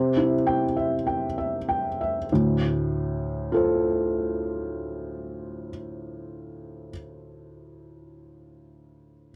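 Wistful and reflective, this short excerpt from a longer piece of neoclassical minimalist piano moves slowly with a loose, rubato feel in four. A felt-muted upright piano plays alone from 0.0 to 9.3 seconds, spanning D2 to G5. Its tone is soft, muted, mellow, warm and intimate, with a boxy character, thin felt and audible action noise, and the instrument sits up front. The opening passage slows down over its first 2.3 seconds, resting on a C chord before shifting to Dm7 as the next section begins at 2.3 seconds. The sound is dry and close, with little reverb, giving the feel of a 1970s-style studio recording.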